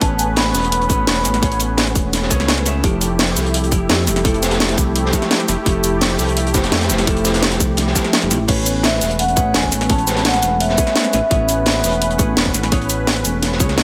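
This excerpt of liquid drum and bass at 170 BPM in 4/4 opens with a soft-mallet vibraphone melody, metallic and airy with a fast motor vibrato and digital delay, over a full band that plays from the start. A dark, clean hollow-body jazz guitar plays picked, compressed accompaniment through a delay. A detuned sawtooth analog pad holds sustained chords with chorus and sidechain pumping, moving from Amaj9 to Fmaj9 at 2.8 seconds. Beneath them, a smooth synth bass blends sawtooth and triangle tones with ring modulation and vibrato for a mellow, sustained low end. The drums stack a tight, tape-warmed electronic kick, an up-front garage kit with a cracking snare, cabasa, crash and hi-hat, and a gritty, rolled-off breakbeat kit with a high-tuned snare sitting in the background. The vibraphone returns at 8.5 seconds as the harmony comes back to Amaj9, and light reverb with small-room ambience lends the piece a warm, uplifting mood.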